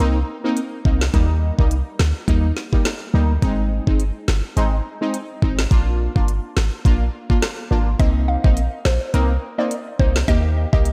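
Dancehall at 105 BPM in C minor with a light 16th-note swing, bouncy and tough, this cut-from-a-longer-piece opens with an up-front electronic island pop drum kit of knocking kick, woody snare, crisp hats and rim clicks over a deep, boomy sine 808-style bass, while a brassy, detuned sawtooth synth brass stab with a filter sweep, chorus, phaser and sidechain pumping comps through Cm7, Eb, Ab and Bb, until a hollow, mellow square-wave pluck with chorus and tape echo enters at 8.0 s to carry the melody in light digital reverb.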